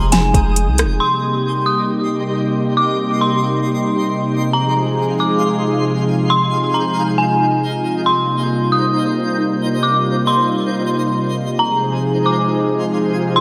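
Atmospheric cloud-rap hip hop at 136 BPM in a half-time 4/4 feel, this dreamy, floating excerpt in Eb major is bathed in a lush hall reverb, with a warm, detuned sawtooth pad holding sustained chords under chorus and sidechain pumping while an eerie, inharmonic FM synth bell carries the warbling melody through tape echo. A twinkling granular texture adds octave-up shimmer throughout, while a deep, sine-like 808-style bass and an overdriven R&B drum kit of soft kick, fat snare, metallic hats and rim click sit up front only in the opening second, dropping out by 1.0 s. From there, the harmony drifts between Eb6 and Ab6 as the pad, bell and sparkling texture float on to 13.4 s.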